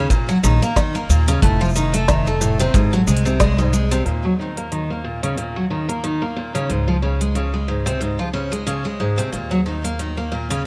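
A lightly swung 4/4 groove at 91 BPM sets up this intimate, autumnal folktronica excerpt, with a tight acoustic kick dropping out at 3.5 seconds and a soft organic electronic kit of woody snare, crisp hi-hat and shaker carrying on beneath a brief band accent near 3.4 seconds. Up front, a picked twelve-string acoustic guitar spins shimmering, octave-doubled arpeggios with fresh strings and audible finger squeak, softened by a low-pass filter and trailed by digital delay. A pizzicato upright bass adds woody depth as the chords move from Eb7 toward Ebm7 and Dbmaj7 under light reverb.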